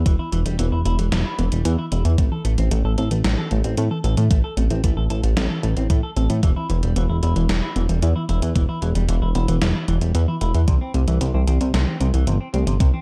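Synthwave in E minor at 113 BPM, this 13-second excerpt from a longer piece moves in a straight 4/4 with a nostalgic, nocturnal mood and a dark production set in digital ambience. An up-front electronic kick drum with a thumpy, sampler-style punch drives the groove, joined by a gated 80s digital drum machine playing hi-hat and snare, its snare bathed in gated reverb and both drum parts carrying a tape-warm, large-room character. Up front as well, a chorused synth bass built from pulse and sawtooth waves sounds glossy and retro, with tube saturation and sidechain pumping giving it a breathing push. In the background, a soft round pluck plays arpeggios through chorus and digital delay, its detuned, warbling tone adding a vintage haze. A clean electric guitar, bright and twangy, picks a compressed riff washed in lush chorus and digital delay. The harmony moves from E5 to Am at 2.2 seconds, back to E5 at 6.4 seconds, and on to C6 at 10.7 seconds.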